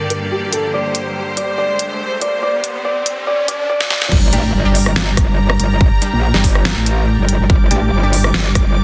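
Riding a half-time 4/4 groove at 142 BPM with a light swing on the sixteenths, this chaotic, aggressive heavy wobble dubstep excerpt in G minor opens with a soft, felt-muted upright piano melody, its action noise audible under a filter sweep and digital delay, over clear, bowed symphonic strings that pump against the sidechain, while a background riser and crisp-hatted, deep-snared drum kit with a fill build toward the drop. At 4.1 seconds the piano stops and the drop hits with an impact, a punchy, up-front electronic kick and a metallic, saturated wobble bass thickened by chorus and overdrive, and from 4.3 seconds bold, bright sawtooth orchestra-hit-like stabs sit in the background with reverb and delay. The dense, heavily limited master carries light reverb and a small-room ambience on the tape-tinged drums.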